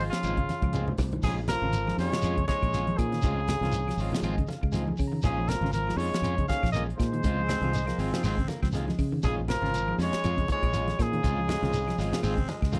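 Afrobeat in an intense, funky vein, this excerpt from a longer piece rides a swung sixteenth-note groove over chords that alternate between Dbmaj7 and Bbm7. A warm, vintage trumpet carries the melody up front with vibrato, joined by a brilliant trombone on a second line in the background, while a raspy, growling baritone saxophone adds another second line from 7.5 seconds. A tight funk drum kit with a high-tuned snare and tight kick, with a fill at the start, plays alongside a round, punchy fingered electric bass. Congas, a grainy shekere and very quiet woody claves fill out the percussion. A clean electric guitar plays arpeggios through spring reverb, a twangy guitar at the edge of break-up adds stabs with slapback echo, and a barky, overdriven tine electric piano sits very quiet in the mix with tremolo and fills around 0.5 and 3.7 seconds. The sound is dry and close, like a small-room 1970s studio recording.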